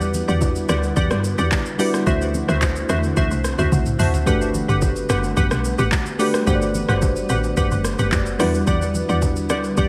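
A straight amapiano groove in 4/4 runs through this late-night, hypnotic fragment, carried by a smooth R&B drum kit of soft kick, smooth hats, handclaps, rim click, shaker and toms that sits up front with a tape-warm, produced character, with a drum fill at 3.7 seconds. Beneath it, a woody, punchy log drum bass thumps out fast-attack notes that decay quickly, while very quiet congas and bongos add bright, acoustic colour from a small room. A mellow FM electric piano, round and dark with chorus and dub echo, plays the accompaniment over chords moving from Em9 to D9 and Gmaj7 before returning to Em9. Glassy, crystalline wavetable pluck stabs warble above with a detuned, vintage digital edge, ring modulation and a filter sweep, also bathed in chorus and dub echo. A faint granular cloud pad holds blurred, evolving sustained chords from 0.1 seconds, and the whole echo-heavy mix carries a light reverb.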